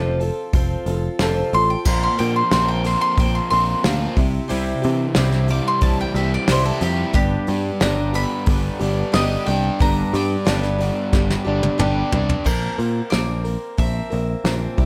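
Jangly and warm, this folk rock and heartland rock excerpt opens on a boxy, parlour-sized picked steel-string acoustic guitar, a punchy, up-front electric bass and a soft brush drum kit with a fat snare and punchy kick in a small room. A bright, double-strung bowl-back mandolin takes the lead from 1.5 s with a slapback echo, while a crunchy, double-tracked overdriven electric guitar plays a riff until 12.5 s. A drum fill from 11.1 s leads into a new section over a Bbsus2 chord, all set in light reverb.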